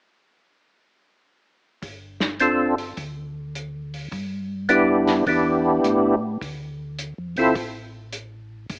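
A fat, percussive tonewheel organ leads this bluesy, greasy soul jazz organ trio fragment, its melody sitting up front from 2.4 to 7.6 seconds with light overdrive, third-harmonic percussion, chorus vibrato and a slow rotary speaker. Beneath it, a round, dark organ bass with mild overdrive and a muffled, gritty acoustic drum kit of tight kick, medium-tuned snare and hi-hat carry a swung feel over G7sus4, Em7 and Dm, both entering at 1.8 seconds. The sound is a rough home demo with an AM radio character and a moderate small-room reverb.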